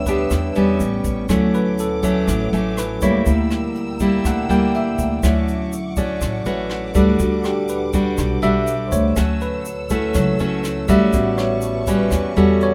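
Relaxed, romantic bossa nova in which a bell-like, clean tine electric piano sits up front and carries a solo throughout the excerpt, beside a fingerpicked nylon-string guitar with fresh strings. A woody, thumpy pizzicato upright bass and a brushed jazz drum kit with boomy kick, hi-hat and rim click hold the groove, while a grainy egg shaker adds sparkle and a lush bowed string section with vibrato sustains quietly in the background. The sound is dry and close, moving through chords such as Dmaj7, Gm6/D and Em9/D before landing on A13.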